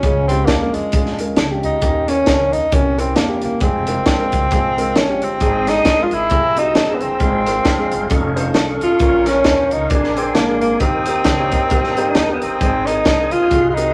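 Reverent and uplifting, this swinging uptempo gospel excerpt sets a breathy, intimate tenor saxophone melody with scooped notes up front over boxy concert grand piano, woody pizzicato upright bass and a punchy, crisp fusion drum kit with a high-tuned snare, while a lightly overdriven tonewheel organ with key click and slow rotary speaker joins on sustained chords at 5.4 seconds, all in a small wet room with vinyl crackle.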